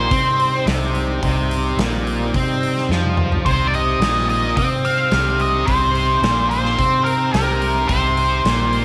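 An octave-fuzz lead guitar, dark and up front with wah and distortion, carries the melody over a gritty, smoky blues rock and southern rock groove in C minor at 108 BPM, cut from a longer piece and resting on a single Cm chord. A bright, double-tracked distorted guitar drives the riff beside a round, foam-muted fingered bass, while an overdriven tonewheel organ holds thick sustained chords in the background through a slow rotary speaker and chorus vibrato. The big-room drum kit, with its punchy kick and medium-tuned snare, enters at 0.1 seconds and plays a fill from 2.9 to 3.5 seconds, all set in light studio reverb.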